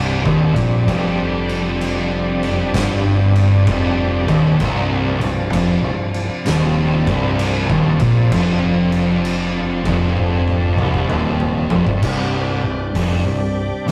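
Two thick fuzz guitars, one dark and one warm, grind out a swung riff over sustained chords from a shouting, lightly overdriven tonewheel organ with chorus vibrato and slow rotary speaker, plus a growling fingered bass, in this heavy, brooding stoner and doom metal passage cut from a longer piece, as an oversized low-tuned drum kit with a fat snare, punchy kick and gritty, pumping stone-room sound joins at 0.3 s, plays a fill from 10.2 to 12.0 s, and carries the shift to a C5 chord at 12.0 s, all in a rough rehearsal-room recording with moderate stone room reverb and tube saturation.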